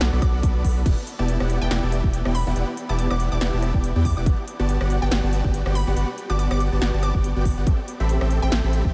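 Future bass with a euphoric, bright mood and a swung, half-time feel, cut from a longer piece where a veiled, muted string section barely sounds under the opening chords before the drop lands at 0.9 s. A huge, detuned supersaw riff and a thick, saturated sub bass both carry sidechain pumping alongside a hard-clipped electronic kick, while a big-room dance kit adds a punchy snare, crisp hats, rim clicks and crash cymbals. A glassy, crystalline wavetable pluck carries the melody in the background with chorus, analog delay and the same pumping, all set in light reverb over a progression that moves from Em9 through Gmaj7 to Am7.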